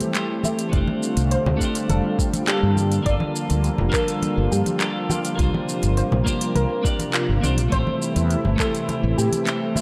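A bright, twangy twelve-string electric guitar with vintage 12-bit sampler grit and tape echo opens this smooth, wistful sunset chillout excerpt at 103 BPM in G dorian, alongside a thick, warbling unison pad with chorus, soft triangle-and-sine pluck arpeggios carrying ensemble chorus and tape echo, a smooth R&B kit of handclaps, hi-hat and shaker, and compressed, saturated congas in the background, before a mellow, up-front fretless electric bass with analog chorus and a soft electronic kick join at 0.7 s over chords moving from Am7 through F69, Gm7 and C7sus4, all set in a dark production with a lush hall reverb.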